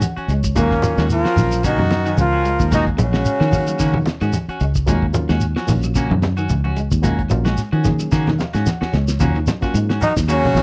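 Intense and defiant, this excerpt of afrobeat at 111 BPM in Eb minor rides a swung sixteenth-note groove on a cloth-damped, thuddy drum kit with a fat snare and tight kick, joined by low-tuned, hard-handed congas in the background, a grainy shekere and a dark, round fingered bass up front from 0.2 seconds. Two clean electric guitars join in: one plays very quiet picked arpeggios, the other bright stabs with slapback echo. A reedy, worn, slightly out-of-tune electric piano sits behind them and adds fills, with a drum fill arriving at 8.1 seconds. A breathy, scooping trombone carries the melody from 0.6 seconds, backed by a vibrato-laced trumpet and a raspy, edgy baritone saxophone, all in a dry, close 1970s-style small-room sound.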